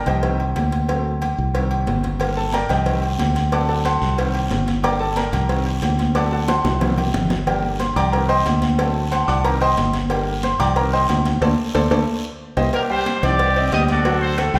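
Salsa at a brisk 182 BPM, fiery and passionate, with a bright, woody upright piano carrying the opening as a solo from the start to 12.7 seconds over a cycle of Cm, D7 and Gm. A dark, punchy fingered electric bass sits up front beside it, while congas with a thick skin, round low-tuned cowbell and bongos, and ringing metal-shelled agogo bells and timbales fill out the background, the agogo bells and timbales sounding compressed and saturated. A raspy guiro joins at 2.2 seconds, drum fills arrive around 6.5 and 12.2 seconds, and the band hits accents from 11.4 seconds. At 12.7 seconds a tight, vintage-toned trumpet section bursts in with vibrato and pop-style punch, taking the melody for the final moments of this excerpt. The whole ensemble rings in a wet recital hall reverb, giving the piano's long sustain a church-like glow.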